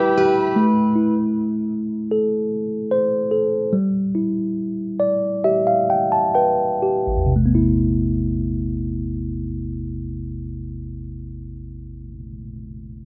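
A rough home-demo mix in a moderate studio reverb carries this emotional, longing pop ballad in A minor, tuned to A4 = 435 Hz, in a straight 4/4 between 61 and 78 BPM that slows through its first half. A worn, slightly out-of-tune tine electric piano sits up front, clean and direct, carrying the accompaniment until 13.1 seconds and adding a fill along the way. A full-bodied jumbo steel-string guitar picks arpeggios with audible finger squeak and tape echo until 1.1 seconds, a dark, woody bowed string section holds lush chords in the background for only the opening moment, and the harmony moves from Em/G to Am and back to Em/G before reaching Amadd9 at 7.3 seconds.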